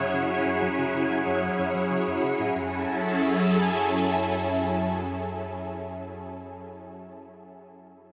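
A phased string machine swirls up front with bright, vintage sustained chords from F#3 to C#5 over a nasal, evolving analog drone on F#2, while a punchy, wave-folded analog bass riff with cassette tape and tape echo sits in the background until 2.9 s and a breathy, wind-like tuned noise texture drifts behind until 2.6 s, all in a cosmic, hypnotic ambient piece in F# minor at 93 BPM, moving from an F#7 voiced minus its third to F#m7 at 2.6 s within a huge reverb whose tail lingers for 8.4 s.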